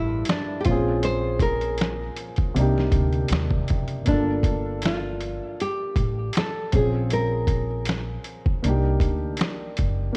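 A fingerpicked nylon-string guitar carries the melody from the start, its full-bodied classical tone softened by a low-pass filter and tape echo, over a dark, mellow upright piano with cassette-tape grit and a woody, gut-string pizzicato upright bass, all cycling through Gm7, Bbm7 and Cm7. At 0.3 seconds, an up-front, sampler-style kit joins with a swung, hazy lo-fi hip hop feel: a thumpy kick, a medium-tuned snare and hi-hat, pitched down, muffled and overdriven. Very quiet, saturated finger snaps enter at 4.8 seconds in this nostalgic excerpt cut from a longer piece, with a light reverb and a cassette-tape haze over the whole mix.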